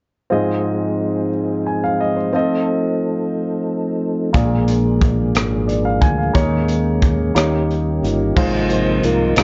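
Hopeful and jubilant, this slow gospel passage in a straight 6/8 is cut from a longer piece and opens with an intimate grand piano, its action noise audible, alongside a soft, flute-like tonewheel organ holding sustained chords through a slow rotary speaker and chorus vibrato. At 4.3 seconds a dark, round fingered electric bass and a crisp fusion drum kit join in, the kit's punchy kick, hi-hat, rim click and crash cymbal sitting up front in a small, pumping room with a touch of vintage sampler grit. The harmony moves from Ab6 through F7 and Bb7 to a suspended Eb7 that resolves before returning to Ab6. At 8.4 seconds the mellow, percussive organ steps forward for a brief solo over the band. Light reverb and a worn cassette quality, with warbly pitch drift and a dulled top end, give the whole recording a nostalgic, homemade glow.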